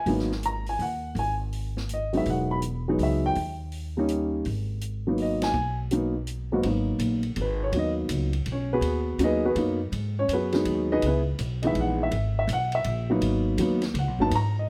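A dark upright piano opens this moody, smoky jazz piano trio excerpt in G# minor, carrying the melody at a brisk 164 BPM in a swung 3/4. Upright bass and an open jazz drum kit join almost at once, the bass plucked with gut strings and a woody, thumpy tone sitting up front, while the kit's hi-hat, ride cymbal and medium-tuned snare sound natural in a small room, with dark cymbals. The piano itself is mellow and smooth with a vintage character, while the harmony moves from a G#7 chord through Emaj7 and D#7 to G#m7 in the opening passage. The band hits an accent at 5.4 seconds, and from 6.6 seconds the piano takes a solo that runs to the end of the cut. Light reverb adds a touch of space to the trio.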